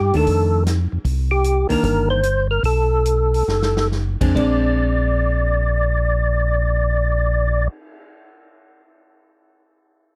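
Soul jazz organ trio in a soulful, greasy swing, where a fat, percussive tonewheel organ with key click, slow rotary speaker and chorus vibrato carries the melody over a round, dark organ bass, a clean picked hollow-body guitar comping, and an acoustic big-band drum kit with punchy kick, medium-tuned snare, hi-hat and crash cymbal, its fill arriving at 3.5 seconds while the tempo slows, all captured in a dry, close 1970s-style studio sound.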